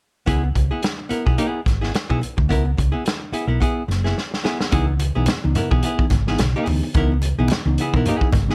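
Funk excerpt at 108 BPM in 4/4, with a lightly swung sixteenth-note feel in C# dorian, carrying a cool, funky mood over a C#m7 chord. From 0.3 seconds a vintage acoustic drum kit sits up front with a tight kick, medium-tuned snare, hi-hat and a rolled-off top, playing alongside a dark, round, punchy hollow-body short-scale electric bass played with the fingers and a clean, picked archtop guitar with a hollow-body tone handling the accompaniment. A drum fill at 4.2 seconds leads into a second section at 4.7 seconds, where a mellow tine electric piano adds stabs in the background through its built-in speakers. Low-tuned congas with a thick skin enter at the same point, sitting very quiet in the mix. A small room ambience wraps the whole band in an intimate, close-knit sound.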